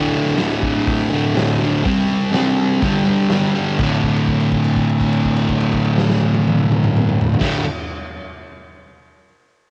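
A straight 4/4 pulse at 123 BPM drives this rowdy, swaggering garage rock excerpt, cut from a longer piece and recorded at home on cassette in a small room. A fuzz guitar, double-tracked and up front, picks a distorted riff from the start, ranging from D2 to C4 over chords that move from D5 to C5 to G5 and back to D5 at 3.8 seconds. The raw garage drum kit comes in at 0.3 seconds with crash cymbal, hi-hat, punchy kick, medium-tuned snare and toms, its acoustic sound gritty and saturated by tape, with a rolled-off top and a bright stone-room character. The guitar is louder than the drums. After the opening passage, a second section begins at 3.8 seconds, where a held note rings until 7.4 seconds before the recording breaks off.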